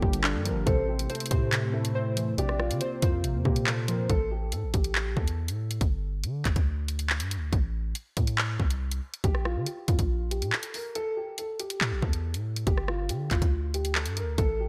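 Bright, 1980s-style digital production with light reverb frames this tense, menacing drill excerpt at 140 BPM in a half-time 4/4 feel, set in A phrygian. An up-front electronic kit of hard-clipped kick, bright hats, rim clicks and handclaps drives it alongside a deep, mellow sine 808 bass, while a dark, boxy grand piano carries the melody with audible action noise. For the first 4.1 seconds, warbling, detuned lo-fi synth keys and a moody, slow-blooming analog pad sit beneath a soft, round octave-layered synth lead that enters at 0.7 seconds, treated with phaser and delay; after that the piano returns at 9.2 seconds before a brief break at 11.0.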